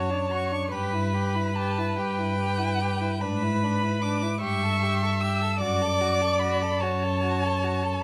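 Tender and warm, this slow, rubato excerpt of a romantic string quartet movement in D major sways in 6/8 at 49 BPM, as a first violin sings the high melody with vibrato and expressive portamento, a rich, distant second violin adds a smooth, even line beneath, an up-front viola fills in warm, smooth accompaniment, and an intimate cello plays the bass sul tasto with a soft, airy bow, all captured by close, detailed microphones in light reverb.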